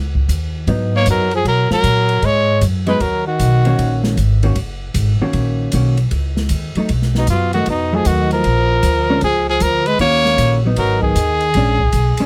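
A swinging, late-night feel runs through this short cut from a longer small-group jazz piece in the swing and bop tradition. A woody, thumpy upright bass played pizzicato on gut strings sits up front from the opening, joined almost at once by an airy drum kit with dark cymbals, a medium-tuned snare and a boomy kick, set back in the balance. A dark, clean hollow-body electric guitar enters at 0.7 seconds to comp the chords, its picked tone compressed. At 1.0 seconds a bright, punchy trumpet takes the melody with light vibrato, forceful and present, while a breathy tenor saxophone with scooped notes carries a second line beneath it. Both horns drop out around 4.0 seconds and return at 7.2 seconds, leaving the rhythm section alone in between, all captured in a dry sound with little reverb.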